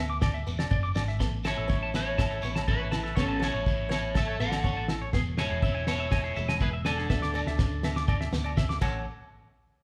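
Highlife guitar band music with a carefree, sunny mood, heard as a short cut from a longer piece played live in one large studio room with moderate reverb. A clean, twangy electric guitar spins arpeggios high up while a boxy fingerpicked acoustic archtop sits in the background, its finger squeak faintly audible. A round, punchy hollow-body short-scale bass anchors the low end, and a cloth-damped, thuddy drum kit with a fat snare, tight kick and dark, rolled-off crash cymbals drives the groove. Grainy, mellow, distant shekere and ringing, saturated agogo bells add a percussive layer in the background. From 1.5 seconds a slightly broken-up, up-front electric guitar carries the melody over chords moving from Eadd9 through A, E and Dsus2, and a drum fill comes in at 7.1 seconds, leading to an A6 chord.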